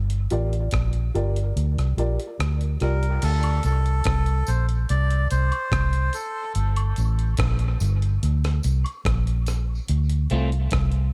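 A deep, spacious dub reggae fragment at 72 BPM in 4/4, cut from a longer piece, with small room ambience and heavy echo throughout the mix. A dark, round, foam-muted fingered electric bass sits up front from the start, joined almost at once by a gritty, compressed sampler-style breakbeat kit with a thumpy kick, crash, hi-hat and rim click, and the opening stretch to 3.2 seconds works as a filtered break with the kick dropping out from 1.6 seconds. A woody, boxy upright piano places low-passed, echoing stabs early on before a reedy, nasal, close-miked melodica takes the melody from 2.8 to 6.5 seconds under the same filter and dub echo. Woodblock and tambourine, along with maracas and a group handclap, sit in the background through the middle, trailing echo of their own. Near the end a bright, twangy guitar at the edge of break-up flickers in briefly with subtle chorus and echo, while the harmony moves from Gm7 through a chordless stretch to Gm and Dm7.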